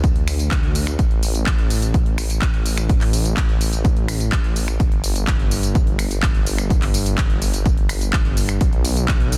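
A punchy, tape-warm electronic kick and a layered house kit of finger snaps, handclaps, hi-hat and tambourine drive this euphoric, triumphant festival progressive house fragment from the first second, beneath a thick, saturated detuned saw bass that sits up front with a menacing, beating edge and sidechain pumping, all in a dry, dense, heavily limited modern master.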